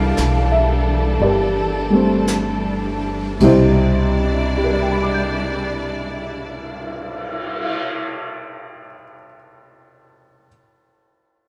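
A slow swung 4/4 at 52-60 BPM, easing down through the opening 3.4 seconds, carries this tender, romantic jazz ballad excerpt in C major, where a dark, boxy, slightly detuned upright piano sits up front over a Cmaj9 and plays on alone after 7.7 seconds, lush bowed strings sustain chords with vibrato and portamento, a woody pizzicato upright bass holds the low end, and a softly placed brush kit with dark cymbals and a boomy kick murmurs beneath, all sharing a moderate stone room.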